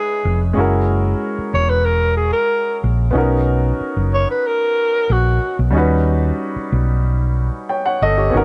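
In a straight, unhurried 4/4, this short fragment of lush 1970s-style soul feels romantic and smooth. A growling alto saxophone carries the melody with breathy, raspy vibrato until 5.6 seconds, over a warm, open baby grand piano and a dark, round hollow-body electric bass that enters at 0.2 seconds. The chords move from C#m7 through F#9 and Bmaj7 to D#7alt, and the sound is up front with light reverb and a softened top end.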